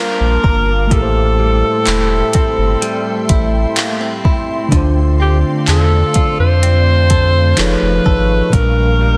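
A dense, heavily limited modern sound in a digital ambience frames this late-night, longing contemporary R&B excerpt at a slow 63 BPM in straight 4/4, where a warm, up-front alto saxophone with vibrato and delay carries the melody over a mellow tine electric piano, a clean direct-recorded electric guitar picking compressed arpeggios through a phaser, and an ethereal, evolving pad with chorus and reverb. A round, sine-like sub bass enters at 0.2 seconds and an electronic drum kit with a soft kick, metallic hats and handclaps follows at 0.4 seconds, re-recorded in a large room and sitting up front. The harmony moves through Gm7, Am7 and Dm7 before an F7alt resolves to Bb6.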